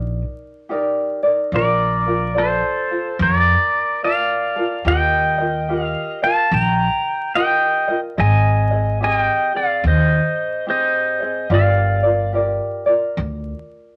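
Hawaiian music, sunny and dreamy, at a relaxed swung 72 BPM, cut from a longer piece: a mellow, fingerpicked tenor ukulele and a woody, growly pizzicato upright bass carry the chords from Ebmaj7 through Bbmaj7, Ebadd9 and Abmaj7 to Gm7, while from 1.6 s a clean electric pedal steel guitar, played with fingerpicks, sings the melody up front with slide and volume swells, all under light reverb and a bed of vinyl crackle.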